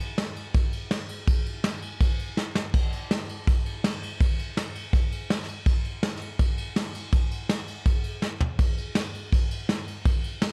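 Rock drumming drives this short excerpt at a brisk 164 BPM in a straight 4/4, with an upbeat, rowdy mood. A soft brush drum kit carries the whole passage on its own, using crash and ride cymbals, kick, snare, and toms. Played with brushes, the kit sounds dark and smooth, with shadowy cymbals, a medium-tuned snare, a punchy kick, and a rolled-off top end. Drum fills mark the change to a new section at 2.7 seconds and arrive again around 8.2 seconds. Set up front in a studio room with a touch of light reverb, the kit feels close and intimate, as if lifted from a longer performance.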